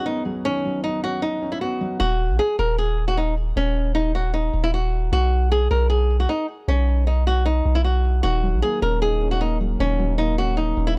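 A long, deep 808-style bass with a sine-like, mellow tone and fast attack arrives at 2.0 seconds and sits up front, anchoring this brooding, hard-hitting trap cut in Eb minor at 154 BPM with a half-time feel. Above it, a boxy, fingerpicked flamenco guitar carries the dark melody throughout, while a shadowy concert grand piano with a rich low end adds accompaniment only in the opening two seconds and again from 8.2 seconds. The harmony moves from Badd9 to Ebm, B5 and Ebm7, and the whole passage has a dry, gritty hardware sound in a small room.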